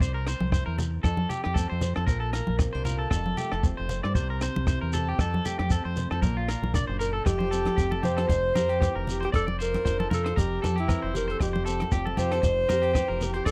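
Carefree highlife guitar band music in which a fingerpicked nylon-string guitar and a twangy, slightly broken-up electric guitar playing arpeggios through spring reverb and slapback echo ride over a round, dark fingered dub bass, a compact cocktail drum kit with a punchy kick and rim clicks, a grainy shekere and background congas, and at 7.0 s a clear jazz alto saxophone with scooped notes joins to take the melody up front, all in a dry, close 1970s-style studio sound.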